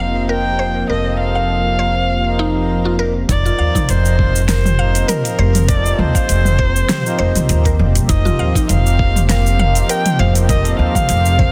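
Lightly swung sixteenths in 4/4 carry this earthy, peaceful organic downtempo piece, cut from a longer track, where a dark, bowed kamancheh sings the melody with vibrato and portamento over a reedy, breathing pedal harmonium, a smooth detuned sawtooth pad with chorus and tremolo, and a round, mallet-like FM pluck playing arpeggios in the background, all resting on a single F7sus4 chord. An up-front, woody pizzicato upright bass anchors the low end, pumping with the harmonium and pad. At 3.3 seconds a deep house kit of cabasa, metallic hats, fat overdriven snare and toms arrives with a gritty, thumpy electronic kick, both in a small room, giving the dense, heavily limited mix its pulse.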